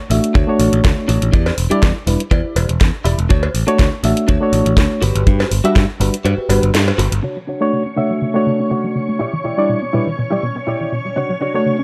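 In a small, lightly reverberant room, this sunny, groovy nu-disco excerpt sets a reedy, slightly out-of-tune electric piano pumping under tape echo against a compressed clean electric guitar riff, a growly picked bass, a tight up-front kick, a cowbell and a house kit with a cracking snare, until the kick drops out at 6.3 seconds and, from 7.2 seconds, the bass and kit give way to a lush, slow-attack string machine and a warbling, detuned unison pluck arpeggio as the guitar, piano and pluck are filter-swept.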